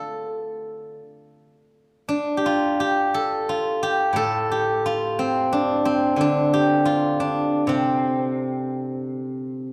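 A steel-string zither, plucked with fingerpicks, carries this short piece of Chinese traditional music entirely on its own, its bright, silvery tone ringing out from close at hand. The playing moves in a free, rubato feel over a loose four-beat metre, giving the phrases an elegant, longing quality. Its range stretches from low A2 up to D5, reaching from deep resonant notes to higher, sparkling ones. A brief opening passage gives way at 2.1 s to a longer second passage that runs until the cut at 9.7 s, since this is a fragment of a larger work. A moderate concert-hall reverb surrounds the instrument, while the overall production leans dark and warm.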